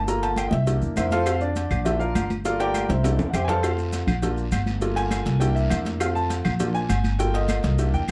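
A clear baby grand piano with long sustain leads this joyful, festive salsa excerpt over a thumpy, woody upright bass played pizzicato and up front, cycling through Gm7, C7, F and Bb. Ringing agogo bells and timbales sound in a live room, while bright congas, a tight high cowbell, woody claves and grainy maracas fill the background. A drum fill arrives at 2.7 seconds, and a raspy guiro joins at 3.6 seconds, all in a dark production.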